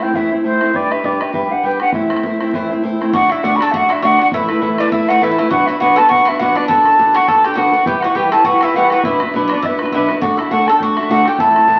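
A wild, dark and lively Celtic folk reel at 202 BPM in 4/4 with a light swing, built on chords such as Am, G, D, Bm and Em. An up-front wooden baroque flute carries the tongued melody with an airy, straight tone, over a boxy, parlour-style steel-string guitar fingerpicking the accompaniment with audible finger squeak, while a damped, tight bodhran sits lower in the mix; at 3.1 s a picked Irish bouzouki joins with a metallic, double-string second line. Wet studio reverb and the crackle of a very old 78 rpm record give this excerpt of a longer piece an aged character.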